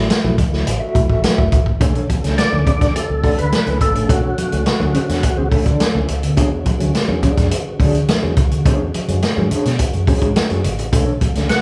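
A sly, funky groove opens with clear tonewheel organ stabs through a stopped rotary speaker, a dark, foam-muted fingered electric bass, a vintage drum kit with a punchy kick and a rolled-off top, and very quiet, bright congas struck with hard hands. A mellow, clean electric guitar with tremolo joins, and from 1.8 seconds a very quiet, lightly overdriven organ holds sustained chords while a percussive organ with third harmonic percussion, chorus vibrato and a slow rotary speaker carries the melody from 2.4 to 5.5 seconds. The band sounds as if playing live in one room, with a moderate large studio reverb and a layer of vinyl crackle.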